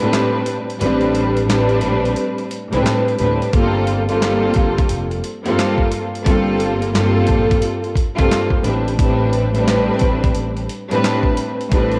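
A swung sixteenth-note groove in 4/4 drives this gritty, moody boom-bap hip-hop excerpt, which opens on a break lasting until 3.5 seconds. The dusty, sampler-style kit of kick, snare, hi-hat and handclaps sounds compressed and thumpy, with a medium-tuned snare and the air of a large room, all run through cassette tape. A warm studio string section sits up front from the very start, bowed sul tasto with vibrato and a soft attack, giving an intimate, smooth-topped ensemble sound that also carries tape grit. At 0.8 seconds a fretless electric bass enters low in the mix, dark, round and amped, with a lush chorus on it. The harmony moves from Am11 to Gm11 and back to Am11, and the whole excerpt has the light reverb and homespun character of a cassette recording made at home.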